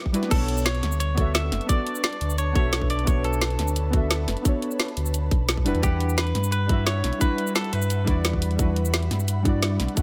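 A lightly reverberant, rolling mix carries this melancholic liquid drum and bass excerpt at 174 BPM in B minor, moving from Bm9 to Em9 at 5.7 seconds. A tight electronic kick and a kit of woody snare, bright hats, shaker and crash sit up front with a small-room character, alongside a full, sine-based sub bass with octave that enters at 0.3 seconds. Dark, wave-folded chord stabs with chorus and an ethereal pad with sidechain pumping in the background frame a twangy, clean, picked electric guitar melody touched with subtle chorus and digital delay.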